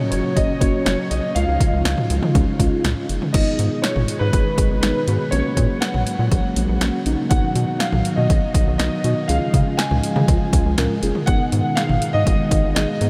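Synth-pop excerpt at 121 BPM in a wistful, nostalgic mood, where a dark, mellow concert grand carries the melody through ensemble chorus and delay over muted, warbling felt-like synth keys, full-bodied string-machine cellos holding sustained chords, a rubbery, hollow square bass and a punchy, tape-warm analog drum machine up front, all steeped in a dreamy wash of huge ambient reverb as the chords move from F# through G#m, B and C#.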